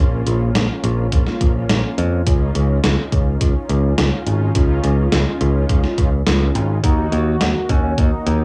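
The bright, growly picked electric bass sits up front with tube saturation and a sidechain pumping that ties it to the moody, cinematic pulse of this synthwave excerpt at 105 BPM in a straight 4/4. Mellow synth brass plays stabs over it from the start, a round, detuned sawtooth tone with a filter sweep, vibrato and chorus, softened by cassette tape and an analog delay. A gated 80s digital drum machine enters at 0.3 seconds with hi-hat and a big gated-reverb snare placed up front, and a thumpy, sampler-style electronic kick joins at 1.1 seconds, both re-recorded in a large room and run through tape. The harmony moves from Bbm to Dbadd9 and then to Ebm at 6.8 seconds, where a thick, nasal unison lead arrives with detuned sawtooth and triangle layers, vibrato and lush chorus. The whole piece has the light reverb and small-room character of a home recording on cassette.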